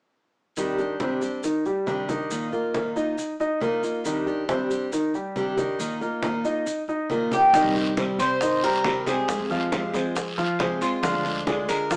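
Saturated congas and grainy maracas set a straight 4/4 groove at 138 BPM in this sultry, danceable Cuban son and guajira in C minor, cut from a longer piece, while a full-bodied picked steel-string guitar and an up-front concert grand piano playing arpeggios trace Cmadd9 and Bbsus4 chords. Alongside a drum fill at 7.3 seconds, a metallic, double-strung Cuban tres takes the melody, and a woody pizzicato upright bass, round low-tuned bongos and a raspy guiro join as the harmony moves through Cm, Fm and Ddim. The recording carries moderate studio reverb and a small-speaker sound.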